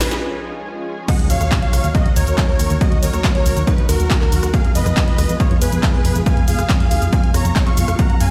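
A drum fill and a very quiet riser open this soaring, euphoric uplifting trance excerpt, as a filter sweep runs over the supersaw melody through a brief build-up and break. At 1.1 seconds the drop lands with an impact, and an overdriven, layered kick drum arrives up front. At 1.2 seconds it is joined by a funky, dark analog bass with a filter pluck and sidechain pumping. The huge, detuned supersaw carries the melody with vibrato and delay, while a catchy square-wave unison lead adds a second line in the background through digital delay. Behind them, a silky analog string pad holds sustained chords with ensemble chorus and 12-bit sampler grit, and a dry analog drum machine supplies a punchy snare, handclaps, hi-hat, rim click, shaker and crash. The harmony moves from Db through Ebm to Fdim, and a large studio reverb gives the mix the sound of a big system playing in a bare room.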